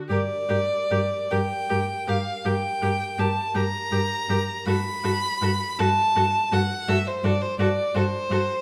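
A distant, focused viola opens this melancholic, yearning fragment of a slow romantic string quartet movement in 12/8 with rubato, and its vibrato accompaniment is joined almost at once by the other three bowed players. A rich violin carries the melody from the background, while a second violin, up front with light vibrato, sings a line above it, and a clear, even cello holds a low G underneath. A moderate recital hall reverb surrounds the quartet, and the harmony moves from G minor to a diminished chord over the G bass at 4.7 seconds.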